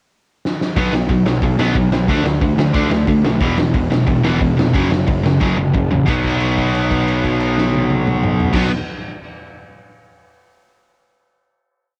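A driving straight four-beat pulse runs through this short, raw and aggressive punk rock piece, opening with a quick drum fill on the pickup bar before the band crashes in at 0.8 seconds. The garage drum kit sits up front with a fat snare, tight kick, hi-hat, crash and toms playing a two-step groove, its tone saturated and gritty with a rolled-off top. Two overdriven guitars chug palm-muted eighth notes through a B5, D5, E5, F#5 progression: one crunchy and set in the background, the other brighter. The fuzz bass is round and up front, pushing steady eighth notes underneath. A second drum fill closes the verse, and at 6.1 seconds the band lands on a final B5 chord that rings out. With little reverb, it carries the grit of a home cassette recording.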